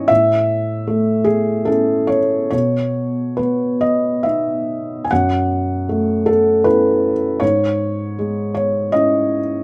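Neoclassical minimalist piano in a melancholic, reflective mood, this excerpt cut from a longer piece features a solo felt-muted upright piano, soft, mellow and intimate with a thick felt tone sitting up front in light reverb, moving with rubato in 3/4 at 68-80 BPM in F# dorian through a passage that shifts to a new section at 5.1 seconds, where it settles on F#m7 before reaching C#m/G# at 7.4 seconds.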